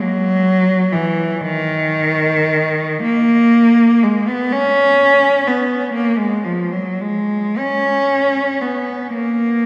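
Classical and nostalgic, this brief lyrical fragment from a longer piece features a lone bowed cello, up front with a warm, focused tone, vibrato and a smooth top. For just under ten seconds it moves freely in rubato through a slow 6/8 across its middle register, while a wet church reverb with a 3.2-second decay surrounds it.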